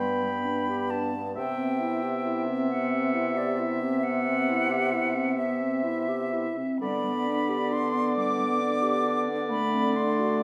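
A recital hall's wet reverb, with a 1.4-second decay, surrounds this slow, romantic movement for wind quintet, a lyrical and tender passage cut from a longer piece. At 45 beats per minute in a rubato 12/8, in G major and tuned to A4 = 441 Hz, all five instruments play together for the full 10.4 seconds. An airy silver concert flute, up front with vibrato and a soft attack, carries the melody from D5 to D6, while a clear, smooth-topped oboe traces a second line between D5 and G5. A mellow clarinet and a distant, roomy French horn fill in the accompaniment, and a warm bassoon with light vibrato, also up front, anchors the bass between G2 and D3. The harmony moves from G to Cmaj7 at 1.4 seconds, settles on G/D at 6.8 seconds and reaches D7 near the close.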